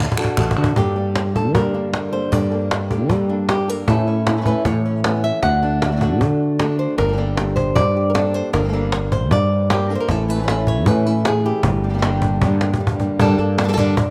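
A bright, fingerpicked flamenco guitar with fresh strings leads up front in this fiery, intense G minor flamenco excerpt at 154 BPM in straight 4/4, backed by a growly, up-front fretless electric bass with subtle chorus and a woody cajon with faint snares and a vintage, band-limited tone. Crisp, distant palmas hand claps sound only from 0.2 to 0.8 s during an opening drum fill, after which a second flamenco guitar adds warm stabs in the background, finger squeak audible, until 13.2 s, with a fill returning near the end. The chords move through D, Gmadd9, A and Gm, all set in a lush hall reverb within a rough home demo mix.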